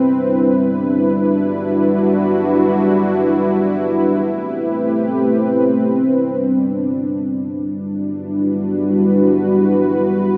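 Melancholic and hazy, this short hip hop fragment in E minor drifts in free time, carried entirely by a dark analog pad that plays alone from start to finish across roughly 10.4 seconds. The pad sits up front with a deep, detuned sawtooth body and sub-octave weight, its slow attack and sustained chords of Cmaj9, Em9 and Am9 softened by chorus and digital delay before settling back on Em9 at 7.5 seconds. A small room reverb and a rough home-demo mix lend the sound a close, unpolished feel.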